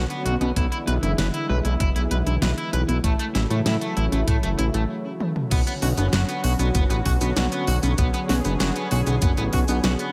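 Nostalgic and moody, this synthwave excerpt moves at 97 BPM in a straight 4/4 feel, built on B dorian and cut from a longer piece. A lush, warbling unison pad holds thick, vintage sawtooth chords with chorus and sidechain pumping, while a very quiet, dusty square-and-saw pluck traces mellow lo-fi arpeggios. An electric guitar at the edge of break-up plays a bright, twangy picked riff dressed in lush chorus and digital delay. Up front, a fat analog bass with tube saturation and a filter sweep anchors the harmony as it moves from Bmadd9 through E7 and A6. A pop drum kit with a fat snare, crisp hats, shaker, toms and crash pairs with a knocking electronic kick that enters at 0.6 seconds, and a brief break with a drum fill from 5.2 to 5.5 seconds leads into the second section back on Bmadd9. Light reverb gives the mix a gentle sense of space.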